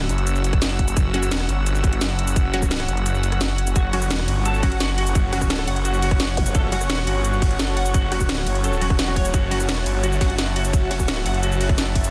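A dense, heavily limited master with light reverb frames this tense, mechanical dark technical drum and bass excerpt, where a snarling, growling distorted saw bass sits up front over a tight electronic kick that drops out from 3.1 to 3.8 seconds and an overdriven kit of cracking snare, bright hats, ride, rim clicks and shaker, while pure sul tasto strings float in a pumping haze alongside very quiet, punchy orchestra-hit-like stabs, joined by slightly broken-up electric guitar arpeggios with chorus and delay, a deep, moody analog pad arriving at 5.0 seconds, and a brief electronic zap in the background.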